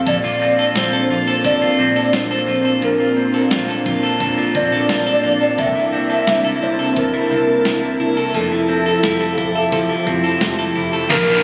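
Floating and ethereal, this dream pop excerpt drifts at 87 BPM in a straight 4/4, built on Bb lydian with chords moving from Bbmaj9 to C13 and Fmaj9. A warbling, nostalgic lead carries the melody with detuned triangle and sawtooth tones, vibrato, chorus and delay, while a lush, thick unison pad holds sustained chords with slow attack and long release beneath it. An electric guitar at the edge of break-up sits up front with bright, twangy picked arpeggios soaked in lush chorus and delay, over a dark, foam-muted, round fingered bass. A crisp 8-bit drum machine supplies a thumpy kick, medium-tuned snare, hi-hat, ride and crash with a tape-tinged, sampler-style character. At 5.7 seconds a worn, slightly out-of-tune celesta adds a very quiet, bell-like sweetness, and at 11.1 seconds an overdriven electric guitar with tremolo and chorus enters up front just as the passage is cut. A moderate shimmer reverb and club ambience surround the whole, captured with the immediacy of a phone recording in the room.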